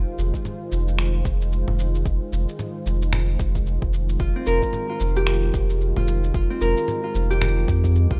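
A loping 112 BPM groove in 4/4 with swung sixteenths sets the pace for this short, mystical and earthy slice of organic downtempo in F minor, resting on a single Fm7 chord. An overdriven, gritty sampler-style kit of finger snaps, shaker and toms joins at 0.2 seconds, with a deep, distorted electronic kick entering at 0.3 seconds, beneath a round sine sub bass and a soft, detuned sawtooth pad with chorus, both pumping from sidechain. Up front, a mellow, ringing fingerpicked Celtic harp plays arpeggios with delay, all within a dry, rough home demo mix.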